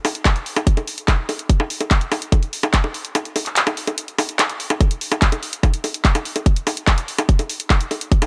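Trance excerpt at 145 BPM in a straight 4/4, psychedelic and hypnotic in mood. A layered drum kit of bongos, handclaps and bright hi-hats sits up front with a tight electronic kick, both sounding re-recorded in a small room with little reverb. The kick drops out from 3.1 to 4.8 seconds, then the drop arrives at 4.8 seconds and runs to the end of the clip.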